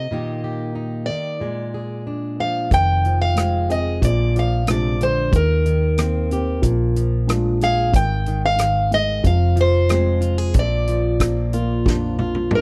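Acoustic folk-pop ballad in a straight 4/4 feel, hopeful and tender, cut from a longer piece. It opens on two steel-string acoustic guitars: a picked, auditorium-bodied guitar sits up front carrying the melody, while a fingerpicked, plugged-in jumbo supplies a full-bodied accompaniment over Eb/Bb and Bb7. At 2.7 seconds the band enters: a felt-muted upright piano adds soft, boxy, mellow arpeggios, a hollow-body short-scale electric bass played with the fingers brings a round, amped low end up front, and a natural country drum kit lays down hi-hat, rim click, toms, a punchy kick and a medium-tuned snare. The harmony moves through Fm7, Bb7, Eb6, Ab5 and Fm before settling on Bb, and a drum fill arrives at 11.9 seconds. The sound is dry and close, in the manner of a 1970s studio, with a small room ambience around the players.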